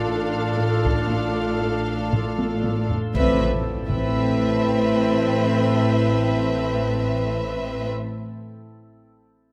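A glassy, drifting harmonics texture hangs over this mysterious, ominous suspense cue, its sustained chords carrying chorus and their own reverb. Beneath it, chamber strings hold the harmony: a vibrato-rich violin section sings an expressive melody, a second violin line and a distant viola section play smooth, even support, and a dark, intimate cello section and a rich, smooth double bass section anchor the bass. A barely audible, brilliant grand piano adds texture at the start, while a very quiet, focused studio cello section plays a low riff. A compressed, saturated taiko ensemble sits in the background with hard sticks and plays a fill before the harmony shifts at 3.1 seconds. From there an electronic impact and very quiet, round timpani on soft mallets enter. The close, detailed recording has light room reverb, and this fragment is cut from a longer piece.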